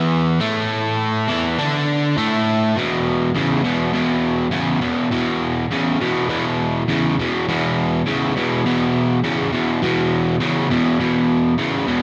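Rock with a smoky, heavy mood, moving in a straight 4/4 feel. A single crunchy overdriven electric guitar carries the whole 12 seconds alone, picked and double-tracked and placed up front in the mix, its bright tone ranging from E2 to D4. It opens on an E5 chord, and the music shifts into a new section at 2.8 seconds. A lush hall reverb with a 2.1-second decay surrounds the guitar, giving it a big arena sound. The passage is cut from a longer piece.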